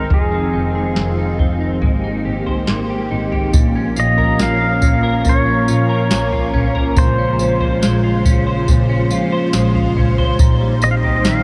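A soft vintage rhythm box, up front with a deep kick and tonal snare plus tambourine and toms, sets a slow, straight 70 BPM pulse under this haunting, ethereal dream pop excerpt in Bb dorian, where a bowed double bass with airy, intimate sul tasto tone, a twangy clean electric guitar picking arpeggios through ensemble chorus and delay, mellow sawtooth string-machine violas holding sustained chords, and a fingerpicked pedal steel carrying the melody with volume swells and slide all drift through a huge reverb as the chords move from Fm7 to Bbm at 3.5 seconds.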